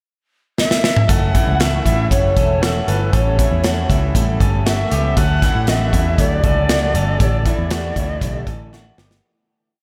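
Jangly indie pop at 118 BPM in a straight 4/4, nostalgic and breezy, this short, complete piece is tuned to A4 = 444 Hz and sits in a dreamy mix soaked in moderate cathedral reverb. At 0.6 seconds a drum fill on an up-front modern studio kit rounds off a one-bar pickup. The kit brings a punchy kick, a medium-tuned snare and a pumping room sound to its brisk indie backbeat. At the same moment a distant, bright, reedy shakuhachi enters with an airy, tongued, motif-based melody full of vibrato and breathy chiff, trailed by analog delay. From 1.1 seconds the pre-chorus moves through F#m7, A7, Dmaj7 and A7sus4, carried by several parts: a dark, full-bodied jumbo acoustic guitar fingerpicking open chord shapes through ensemble chorus; a slightly broken-up, lo-fi electric guitar ringing out picked arpeggios doubled in sixths, washed in spring reverb; and a round, foam-muted vintage bass playing a melodic line. 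A second drum fill arrives near the end as everything fades out from 7.2 seconds.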